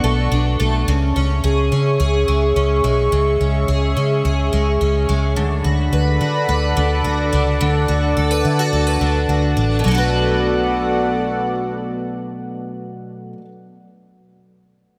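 Ethereal and melancholic, this dream pop excerpt sets a picked twelve-string acoustic guitar's bright, shimmering, octave-doubled arpeggios, colored by analog chorus and tape echo, over a thick, detuned sawtooth pad holding slow-blooming chords with chorus and a dark, round, foam-muted electric bass sitting punchy and up front, all bathed in a long plate reverb as the harmony drifts from Bm7 to C#m and back before the pad drops out at 12.8 seconds.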